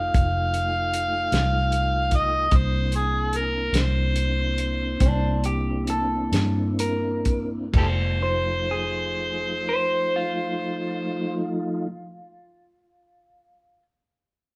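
Slow blues in a laid-back, soulful 12/8, heard as a short cut from a longer piece where the band plays live in one room with a moderate large-studio reverb, easing down in pace from about 0.9 to 7.7 seconds. Up front, an overdriven harmonica carries the melody with a gritty, amplified tone, light vibrato, scooped notes and tongue slaps in a jazz-inflected solo. Beneath it, a mellow tonewheel organ holds soft, flute-like sustained chords through a slow rotary speaker and chorus vibrato, while a foam-muted fingered electric bass sits round and dark at the bottom. A dry, muffled soul drum kit with a fat snare, tight kick and dusky cymbals plays until 8.0 seconds. An electric guitar through a small old amp enters at 5.0 seconds with a slightly broken-up, picked second line that carries on to the close as the harmony moves from dominant ninth chords to a plain F7.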